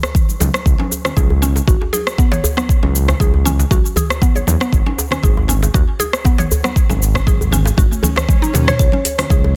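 Afro house at 118 BPM with a light swing, driving and hypnotic, built on a deep, up-front electronic kick, an afro-pop kit with metallic hats, rim clicks, shaker, toms and a soft-clipped snare, plus a tight, cracking djembe and distant, band-limited congas. A smooth sawtooth-and-triangle bass pumps with sidechain compression while a woody, round FM mallet pluck arpeggiates with chorus, phaser and dub echo over C#5 and G#sus4 chords. A drum fill arrives at 7.8 seconds and a faint background swell at 8.0 seconds, leading into a hollow, ringing kalimba note with dub echo at 8.8 seconds, all in a dry, dense, heavily limited mix cut from a longer piece.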